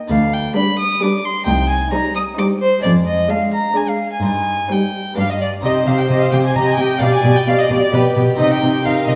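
Heard from further back in a wet recital hall, this brief cut from a longer baroque-style concerto movement in C minor moves at 131 BPM in a straight 3/4 with a dramatic, stormy mood. An airy, brilliant harpsichord opens the accompaniment, and at 0.1 seconds a rich, reedy solo violin enters with the melody up front, with light vibrato and a gut-string tone, alongside a warm chamber cello section holding the bass. From 0.6 seconds two violin sections in the background share a melody and a second line, while a dark, nasal viola section joins the harpsichord in the accompaniment over chords that keep returning to C minor.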